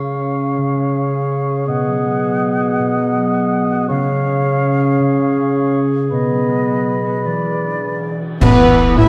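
Heroic and triumphant, this cinematic adventure-score excerpt in 12/8 at 108 BPM opens with a dark cor anglais, close-miked clarinet and airy silver flute weaving second lines over mellow French horn chords and ringing, up-front harp arpeggios, before bright cymbals and bass drum enter at 6.1 seconds and a lush bowed string body of violins, violas, cellos and double basses joins a very quiet, roomy tuba for a full-band accent at 8.4 seconds, all set in a wet scoring-stage reverb with a dark, warm production.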